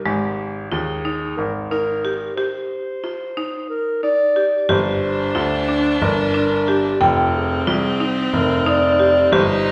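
Contemporary instrumental chamber music in 7/8 with a pensive, urgent mood: a mellow, smooth-topped clarinet carries the melody over clear, up-front baby grand piano bass and buzzing, woody marimba arpeggios struck with hard mallets, joined at 4.7 seconds by a bright, focused bowed viola with vibrato on a second line and a very quiet frame drum played with soft hands, the ensemble heard in a reverberant recital hall in this cut from a longer piece.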